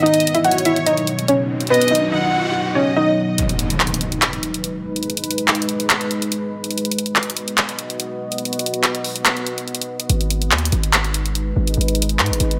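Hip hop in a trap style, this excerpt carries an eerie, dark mood over a half-time feel. A lo-fi, warbling pluck with chorus and a low-pass filter carries the melody up front, with a smooth, bowed violin section playing a second line through tape echo. Both fall away by 3.4 seconds, where an electronic riser lands on its impact. Beneath it all, a deep, moody ambient pad holds slow-blooming sustained chords drenched in chorus and reverb, shifting between B and G#m. An electronic trap kit with bright hats and handclaps sits up front throughout. At 10.1 seconds a punchy, heavy 808-style bass arrives, giving the low end a hard-hitting weight under a light overall reverb.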